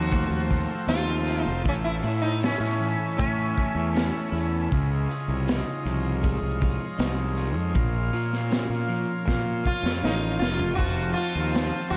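Dark and trippy, this 12-second cut of psychedelic rock at 79 BPM moves through F, A, Dbadd9 and Bbm. A buzzing, shimmering sitar melody sounds from 0.0 to 4.3 seconds and returns at 9.7, drifting through delay over sustained chords from a buzzy overdriven combo organ in spring reverb, a twangy twelve-string electric guitar riff with phaser in the background, and a round, punchy fuzz bass up front, while a gritty, saturated breakbeat kit with a high-tuned snare and tight kick plays a fill at 9.3 seconds, all floating in a dreamy, reverb-soaked mix.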